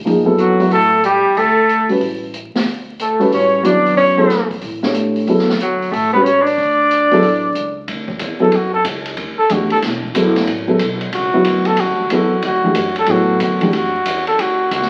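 A brisk swung 4/4 pulse drives this fragment of modal jazz, set by an open acoustic drum kit with dark cymbals on ride and hi-hat, a high-tuned snare and a boomy kick. Beneath it, a woody pizzicato upright bass on steel strings sits low in the mix, while a mellow, slightly detuned upright piano with a boxy tone and long sustain stands forward on a single Dmaj9 harmony, giving the music an open, hypnotic mood. A breathy trumpet with light vibrato carries the melody above a smooth-topped tenor saxophone playing a lower second line, until the saxophone drops out at 7.7 seconds. From 7.9 seconds the trumpet, present and up front, takes a solo, and the piano falls away at 13.7 seconds. The recording has the character of a very old 78 rpm record, with vinyl crackle and a moderate large-studio reverb.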